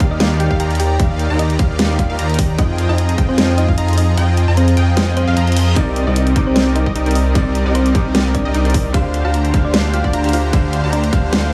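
An emotional, bittersweet future bass excerpt in C minor at 151 BPM with a swung half-time feel opens with a round, tine-like thumb-piano-like synth pluck melody warbling through cassette tape and dub echo over a smooth soft supersaw riff, very quiet lush unison pluck arpeggios, a thick, saturated detuned saw bass, a hard-clipped electronic kick up front and a dubstep drum kit with hi-hat, ride and a huge snare, all moving through Ebmaj9, Fm7, Cm7 and G7sus4/D in a small digital room, as the kick drops out at 4.2 s, a reverse cymbal sounds from 5.2 to 5.8 s and a bright grand piano with audible action noise joins in the background at 5.7 s.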